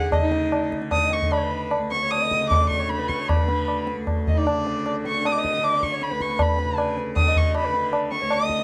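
Driven by low-tuned, close and dry tabla entering at 0.1 seconds in a straight 4/4 at 154 BPM that keeps speeding up, this meditative, radiant Hindustani classical excerpt sets a dark, woody violin melody with vibrato and sul tasto bowing up front over a clear, gliding sarangi second line with portamento and sympathetic strings, all above a bright, buzzing, shimmering tanpura drone, in a dark production with light reverb.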